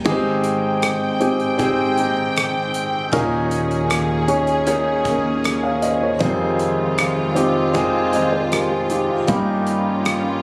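This pop ballad excerpt moves at a slow 78 BPM in straight 4/4, carrying a heartbroken, melancholic mood. A concert grand piano sits up front with a deep bass register, carrying the accompaniment from the opening second. Behind it, a picked steel-string acoustic guitar with a jumbo, full-bodied tone plays arpeggios low in the mix, a faint finger squeak audible. A studio string section enters at 0.1 seconds with lush, woody bowed chords and close, vibrato-rich ensemble sustains, while a damped 70s drum kit keeps a dry, polished pulse with a tight kick, rim clicks, hi-hat and dark crash cymbals, falling silent at 10.2 seconds. The harmony moves through Abmaj7, Eb7sus4 and Fm7 before landing on Eb7/G, heard as if captured on a phone in the room, with light reverb, club reverb, small room ambience and compression.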